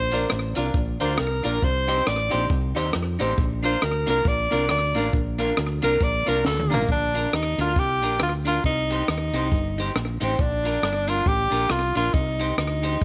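A bright alto saxophone with light vibrato opens this bouncy, cheerful ska excerpt over a dark, round fingered electric bass. A compact cocktail drum kit with a high-tuned snare and punchy kick, a clean semi-hollow electric guitar with warbly pitch drift, and brilliant, woody upright piano stabs join almost at once, with slapback echo on the drums, guitar and piano. During a drum fill, a clear tenor saxophone takes over the melody at 6.7 seconds and the piano stops at 6.8 seconds, while the swung groove moves between Bb and Cm under light reverb.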